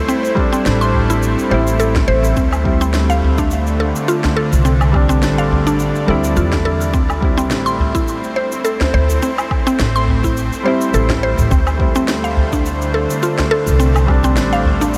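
Soaked in a huge ambient reverb, this dreamy, hypnotic organic downtempo piece at 105 BPM, with a light 16th-note swing, sets a soft felt-muted upright piano roughened by vintage 12-bit sampler grit, delay and sidechain pumping against a tense, nasal bowed-like drone that also pumps, while woody FM mallet-like plucks spin chorused, delayed arpeggios, a steel-string pizzicato upright bass pumps up front, and an electronic cabasa, sharp snare and woodblock, a deep electronic kick and a close, dry udu keep the groove over chords moving from Am to Dm7.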